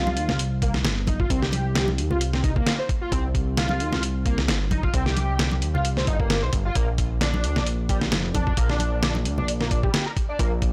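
A fat, detuned analog bass with a filter pluck sits up front alongside a dusty soul sampler-style drum kit, whose thumpy kick and fat snare carry a compressed, gritty punch under studio reverb in this raw, funky breakbeat cut from a longer piece at 132 BPM in C minor with a 54% swing on the 16ths. A screaming, guitar-like overdriven synth lead plays a riff between G3 and C5, its saturated sawtooth and pulse tones colored by ring modulation, vibrato, ensemble chorus and tape echo, while close, dry congas played with hard hands sit in the background. The harmony holds on Cm before moving to Bb at 6.8 seconds, all within a dry, gritty hardware-style recording set in a digital ambience.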